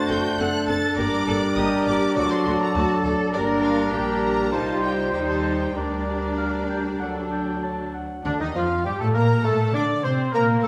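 A stormy, dramatic G minor orchestral passage at 99 BPM with rubato, where a lush, vibrato-rich violin section carries the melody over dark sustained French horn chords, a rich cello section with expressive portamento and a smooth double bass section on the bass, a background viola section and dark bassoon accompanying, a distant oboe, clear clarinet, airy silver flute and a very quiet second violin section weaving second lines, and a dark trumpet adding stabs, all set in a wet scoring-stage reverb, with the music moving into a new section at 8.2 seconds.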